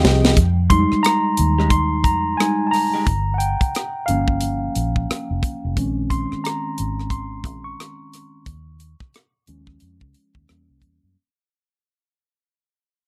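Introspective and late-night, this neo-soul R&B groove sways at an easy, swung 4/4 pace, and it is cut from a longer piece that fades out from 0.4 seconds onward. A brief drum fill opens it, then the tine electric piano takes a solo throughout, its worn, slightly out-of-tune voice sitting up front, softened by a low-pass filter and heard as if through built-in speakers. Beneath it, the vintage muted fingered electric bass is dark, round and foam-muted, while the tight funk drum kit offers a dry, polished pulse of hi-hat, tight kick, rim click and medium-tuned snare. Between 1.6 and 3.1 seconds, an electric guitar through a small old amp adds a quiet second line, bright, twangy and slightly broken-up, with a phaser on it. The harmony drifts from Fm9 through Gm7b5, Bbm11 and Eb9sus4 to an Edim7, all set in a light reverb.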